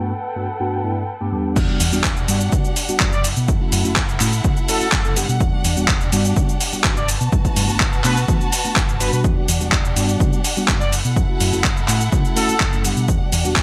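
A smooth-topped trumpet section carries the melody from 3.1 seconds in this nostalgic, sensual excerpt of filtered disco house, after a filter sweep over a mellow, phased tine electric piano and a clear, close violin section holding bowed vibrato chords gives way at 1.6 seconds to a drop where a dark, round hollow-body bass, a gritty, tape-toned sampler-style kit of crash, handclaps, hi-hat and shaker with gated reverb, and a punchy overdriven electronic kick arrive, with sidechain pumping and low-pass filtering on the piano, violins, bass, trumpets and the kit's cymbals and percussion, all in a bright, dry 1980s-style digital production.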